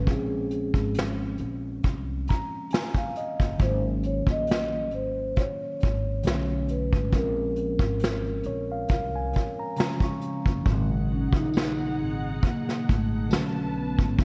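The vintage brush drum kit sits up front in this reflective, melancholic lo-fi hip hop excerpt, its dark, smooth brushes, punchy kick and medium-tuned snare swinging gently at 68 BPM in 4/4 in Bb minor. A vibraphone played with soft mallets, motor off, carries the melody with a metallic, ringing tone. A mellow tine electric piano, filtered and run through cassette tape, supplies clean accompaniment and slips in occasional fills. Beneath them a pizzicato upright bass gives a woody, growly low end as the harmony moves through Bbm9, Ab7sus4 and Bm9. At 10.7 seconds the hi-hats fall silent and a studio string section enters with intimate, bowed sul tasto chords, soft in attack with light vibrato, and shortly after a faint, jingly tambourine joins in the background. Light reverb and worn, warbling old tape with pitch drift give the piece its hazy, nostalgic character.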